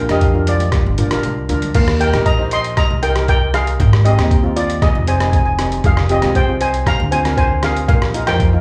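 Calypso in Eb major at 117 BPM, sunny and carefree, with a shimmering lead steel pan played with medium rubber sticks up front over a double-seconds pan accompaniment, both carrying slapback echo and the lead adding tape echo, a woody pizzicato upright bass on steel strings, a gritty, pitched-down sampler-style drum kit with thumpy kick, hi-hat, rim click and crash, and very quiet, distant congas heard only from 0.5 to 1.7 seconds, all sounding like a live gig through a club PA as chords move from Bb through Eb, Ab and Fm to a closing Bbsus4 in this short excerpt cut from a longer piece.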